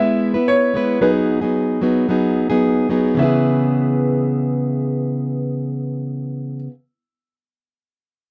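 Carefree and sunny, this short acoustic pop excerpt at 111 BPM in E major pairs a clear, woody upright piano melody, touched with slapback echo, with an up-front, full-bodied fingerpicked steel-string acoustic guitar of fresh strings and jumbo body, both playing from the start over C#m7, G#m7 and then E6 at 3.2 seconds in a dry, close 1970s-style studio sound.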